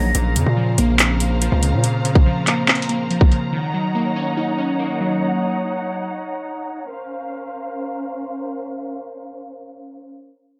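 Glassy, detuned digital keys with chorus, veiled con sordino strings and a saturated, distorted 808-style bass that stops at 1.8 seconds open this menacing, tense half-time drill excerpt at 142 BPM in Bb minor, where a drill drum kit of hard-clipped kick, metallic hi-hat and handclaps sits up front until 3.4 seconds, a filter sweep colours the keys over Bbmadd9 and Ebm7 chords until they stop at 6.1 seconds, and the lush bowed strings sustain on through light reverb and a low-pass filter.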